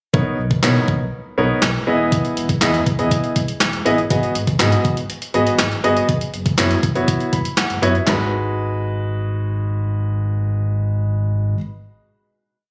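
A gated 80s digital drum machine sits up front in this bittersweet, energetic dance-pop piece: a thumpy kick, a gated-reverb snare layered with handclaps, hi-hat and toms drive a syncopated pop beat until the drums stop at 8.2 seconds. Alongside them, an intimate, up-front grand piano with audible action noise plays syncopated chord stabs and a fill from 7.1 seconds, while a deep sine sub bass with octave carries a syncopated line with chromatic approach notes, both parts pumping with sidechain. The piece is a single pre-chorus that lands on a final G#m7 chord at 8.1 seconds, heard through the club reverb of a phone recording made in the room.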